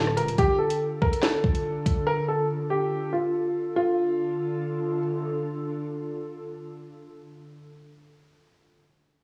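Cold and ominous, this short cut from a longer drill track sits in a half-time feel with a hazy, cassette-tape grain running through every part. A concert grand piano carries the melody over the first 5.0 seconds, its intimate tone close and up front, with audible action noise, deep bass and an analog delay trailing its notes. Beneath it, a glassy FM pad holds sustained chords until 7.3 seconds, its slow attack and long release given an ethereal, mellow shimmer by ensemble chorus and its own built-in reverb. The drill drum kit appears only briefly, from 0.1 to 2.0 seconds, with a knocking kick, sharp snare, metallic hi-hats, handclaps and rim clicks, electronic and produced yet softened by tape. The whole mix sits in light reverb and digital ambience, giving the homemade cassette sound a faint studio sheen.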